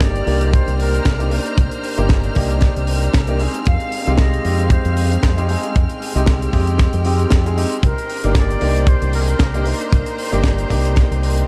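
Sensual and cosmic, this nu-disco excerpt moves at 115 BPM in 4/4 with a gentle 16th-note swing, settled in C minor over a Cm7 to Fm7 and back to Cm7 progression. Up front, a tight, mid-forward acoustic kick drives the groove alongside a fingered electric bass run through an envelope filter, its tone warm, direct and amped. A small-room funk kit adds hi-hat and a high-tuned snare, while a brilliant baby grand piano comps with long sustain, audible action noise and a touch of delay. Behind them, a rich studio string section holds bowed chords with vibrato and a soft attack, breathing with sidechain pumping. An airy silver concert flute carries the melody with lifted highs and analog delay before dropping out at 9.7 seconds, leaving the rest of the band in light reverb and studio ambience until the cut at 11.5 seconds.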